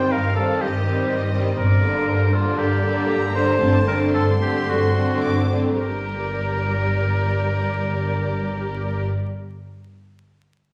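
Classical orchestral music in G minor, stormy and dramatic, moving in 4/4 at roughly 105-123 BPM with a slowing of pace from 0.6 to 5.8 seconds. A dark, distant violin section carries the melody high above the ensemble with expressive vibrato, while a second violin section with a focused, smooth top and a warm oboe with light vibrato, placed up front, trace second lines beneath it. Rich, intense violas fill in the accompaniment, and lush cellos and double basses anchor the bass on G, their bowed tone even and remote. The harmony passes from Cm/G through Gm and D7/G before settling back on Gm at 5.8 seconds as the passage turns to a new section. The whole ensemble sounds heard from further back in a reverberant recital hall, with vinyl crackle adding an aged patina to this fragment of a longer work.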